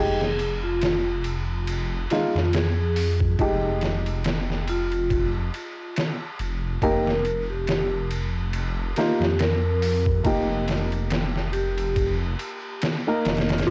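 A deep, rumbling detuned sawtooth bass sits up front with tube saturation in this smoky, melancholic trip hop piece in F minor, which is cut from a longer work and moves at a slow 70 BPM in 4/4 with a swung sixteenth-note feel. From 0.2 s a pitched-down, sampler-style drum kit of thumpy kick, medium-tuned snare, hi-hat and ride comes in muffled and compressed, pushed through overdrive and cassette tape. A clear, woody upright piano with a boxy, short sustain carries the accompaniment through harmonic tremolo, 12-bit sampler grit and a low-pass filter that sweeps across the whole passage. Above it, a metallic, ringing vibraphone with a slow motor vibrato plays the melody through tape echo and cassette grit until 12.1 s, over harmony that shifts from Fm7 to F9sus4. At 13.7 s an eerie, inharmonic FM synth bell sounds a single chorused F4, all under light reverb with a home-cassette character.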